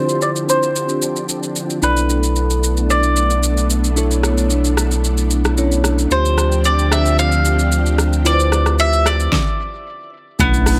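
A light reverb and a heavy wash of echo give this short excerpt of deep, hypnotic amapiano its misty, spacious sound, moving at 112 BPM in a straight 4/4 under a filter sweep. A bright, picked bowl-back mandolin carries the melody up front, its doubled strings trailing tape echo, while a bell-like tine electric piano adds clean accompaniment through analog chorus. Behind them, a vintage string machine playing violin tones lays down slow-attack, shimmering chords, and a deep house kit of punchy kick, fat snare, metallic hats, rim click and shaker gives an overdriven, layered groove. A round sine sub bass joins at 1.8 seconds under the Dm11 and Bm11 harmony and sits prominently until the music breaks off at 9.3 seconds. At 10.4 seconds a dark, percussive log drum bass lands together with a very quiet electronic impact.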